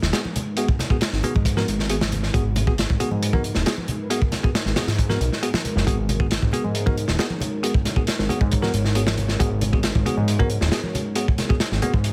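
A crunchy, gritty breakbeat drum kit with a tight kick and mid-forward snare sits up front in this swaggering, funky G# minor breakbeat excerpt at 136 BPM, driven by a fat, detuned sawtooth analog bass and dotted with bright, bell-like tine electric piano stabs through dub echo, while congas sit in the background and a deep, moody, warbling pad with 12-bit sampler grit and sidechain pumping holds a single G#m7 chord under a heavily compressed, radio-like sound.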